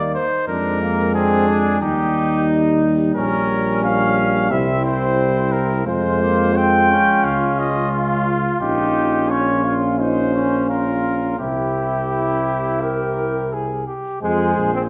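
Set in a reverberant recital hall, this classical brass quintet passage, cut from a longer piece, sounds heroic and grave in a straight 4/4. Out front, a warm trumpet with light vibrato carries the melody, while a more distant flugelhorn sits in the background with a second line. A brilliant yet roomy trombone and a mellow French horn fill out the accompaniment, and a smooth-topped tuba, also up front with light vibrato, anchors the bass as the harmony settles on F minor at 14.2 seconds.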